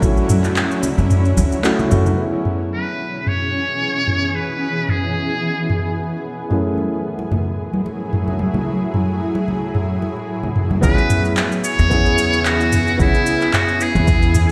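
A lightly swung 4/4 groove from a layered deep house kit of handclaps, shaker and toms, joined by ringing soft-hand congas, sets a sunny, blissful sunset chillout mood in this clip cut from a longer piece. A warm grand piano accompanies while a shimmering, ethereal pad with chorus and a filter sweep carries the sustained chords, and the woody, thumpy upright bass sits beneath with a band accent at 1.6 seconds. A buzzy metal-muted trumpet with vibrato and scooped notes takes the melody from 2.7 seconds, and the punchy electronic kick and upright bass return at 10.8 seconds, all heard through a stone-room reverb as if played on a big sound system in a bare room.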